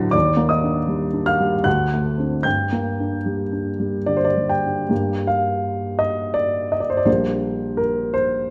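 A close, intimate grand piano sits up front in a wet stone room whose reverb lingers for about 1.3 seconds, and the noise of the instrument's action is audible beneath its warm, natural tone. This short cut from a longer romantic character piece for solo piano unfolds in a flexible triple metre, with rubato pulling the phrasing in a brooding, stormy mood. The piano spans Bb1 to Bb6, and it is tuned a touch high, with A4 at 444 Hz. The harmony moves from Ebmaj7 through D7 to a G minor chord by 2.4 s. A second passage begins at 4.9 s and settles onto Gm/Bb near its close.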